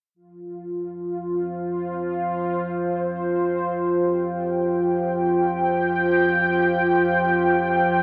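A bright, resonant pad of detuned sawtooth tones with chorus sits up front, holding sustained chords on an F5 harmony over a quieter, dark, rumbling and warbling wave-folded drone with its own built-in reverb and a filter sweep. Both enter at 0.4 s in free time and carry this ominous, cavernous dark ambient excerpt through a wet plate reverb and an AM radio sound.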